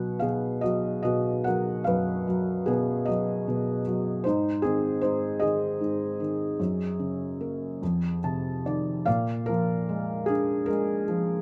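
A felt-muted upright piano carries this short solo classical excerpt alone, its tone soft and mellow with audible action noise that lends an intimate, close-up feel. The mood is peaceful and calm, moving at a slow 50 beats per minute in 6/8 with uneven, rubato pulses that let the phrasing breathe. The piano spans from F2 to A5, and its harmony passes through B, G#, F#add9 and F5 before arriving at Bb7. A brief fill from 7.8 to 9.1 seconds leads into a new section that begins at 9.1 seconds and runs to the end at 11.4 seconds. Light reverb surrounds the up-front piano, keeping the sound hushed and lyrical as the fragment is cut from a longer piece.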